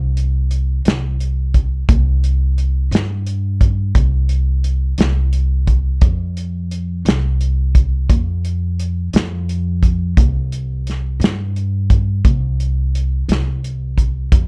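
An upright bass opens this gritty, swaggering slow blues, its woody, thumpy gut strings plucked up front and moving in a low register between C2 and G2. At 0.2 s a soul drum kit joins with hi-hat, kick and snare, recorded in a small room with a dark, smooth tone and a rolled-off top. The kick is punchy and the snare medium-tuned, and the kit sits up front. The tempo is a slow 58 BPM counted in dotted quarters, in a 12/8 metre with a straight feel, and the tuning sits slightly low at A4 = 439 Hz. The production is dry, dark and warm, and this 14.5-second excerpt is cut from a longer piece.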